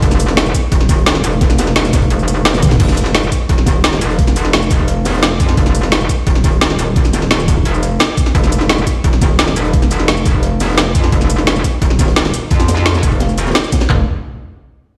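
Dark and futuristic, this excerpt of technical drum and bass runs at 173 BPM in a straight 4/4, opening on a drop that lasts until 2.8 seconds, with a drum fill at 2.5 seconds before the next section takes over. Up front, a metallic, wobbling FM bass growls between Eb1 and F2, its fast attack and sustained tone pushed hard with distortion, chorus, tube saturation and sidechain pumping for an aggressive, bright edge. Two layered electronic drum kits carry the beat, both overdriven and up front: one delivers a knocking kick with handclaps and toms, while the other adds a woody snare, bright hats, shaker, crash cymbal and more toms. Behind them sits a crunchy breakbeat kit of acoustic hi-hat and medium-tuned snare, gritty and saturated yet smooth, with a rolled-off top and high-pass filtering on its hats, snare and room. The mix carries light digital ambience and the feel of a big sound system playing in a bare stone room, and all parts play together from the start until around 14 seconds.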